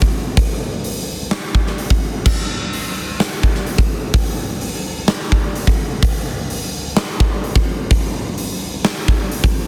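A huge acoustic arena drum kit plays alone from the start, driving a straight 4/4 rock beat at 127 BPM with crash cymbal, hi-hat, punchy kick and a medium-tuned snare. The kit sits up front in a pumping hall sound with bright cymbals, giving this brief cut from a longer piece a hazy, blissful mood. The master is dense and heavily limited, with the drums running to 9.6 seconds.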